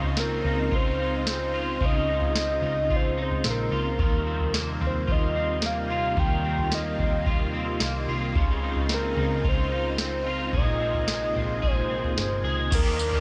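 An excerpt of ethereal, dreamy dream pop in Eb mixolydian at 110 BPM in a straight 4/4, opening with a shimmering string machine holding sustained violin chords over a booming analog drum machine whose deep kick and crisp snare sit dry and up front, joined by crash cymbal, tambourine and toms. A slightly broken-up, twangy electric guitar picks arpeggios through ensemble chorus and tape echo, while a hollow-body short-scale electric bass plays a dark, round line underneath. At 0.2 seconds a soft octave-layered synth lead enters with the melody, its triangle and sine tone full and round, with a sub octave, vibrato, chorus and tape echo. The harmony moves from Dbmaj9 to Eb69, back to Dbmaj9 and then to Bb9sus4, all under light reverb and digital ambience. At 12.7 seconds a bright, crunchy, double-tracked overdriven guitar arrives with harmonic tremolo and lush chorus just before the cut at 13.2 seconds.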